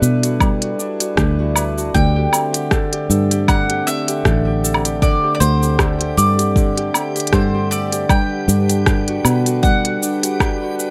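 A lightly swung 4/4 groove opens this short folktronica clip. It is carried by an up-front organic electronic kit of smooth hi-hat, rim click, shaker and woodblock, joined by a deep, tape-toned electronic kick at 0.4 seconds. Beneath it, a fingered electric bass plays a round, dark, foam-muted line that sounds direct and amped. Celtic harp arpeggios ring out with delay, a soft-mallet vibraphone adds a mellow, close-miked second line through digital delay, and a very quiet hand-pumped harmonium breathes reedy sustained chords underneath. At 1.9 seconds a bowl-back mandolin picks the melody on its doubled strings, treated with delay, as the harmony moves from Gmaj7 to D7sus4 and back. A dreamy, reversed granular texture, bright and detuned, drifts in at 4.3 seconds in the background, rounding out a pastoral, playful mood set in light studio reverb.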